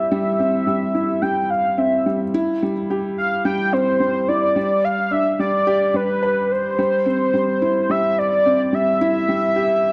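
A steady, straight 4/4 pulse carries this short electronica excerpt, a melancholic and moving fragment cut from a longer piece. A velvety synth lead sings the melody up front, its sawtooth and triangle tones wave-folded into a smooth, sustained voice with a soft attack, gentle vibrato, chorus and a digital delay. Beneath it, a felt-muted upright piano plays a riff in a lower register, mellow and intimate, its boxy, thin-felt tone close to the ear with audible action noise and its own touch of digital delay. Both parts play throughout the roughly 9.9 seconds. The harmony moves from C to G at 4.6 seconds and back to C at 6.8 seconds. A moderate echo-chamber reverb with a 1.6-second decay wraps the whole in a soft, enclosing space.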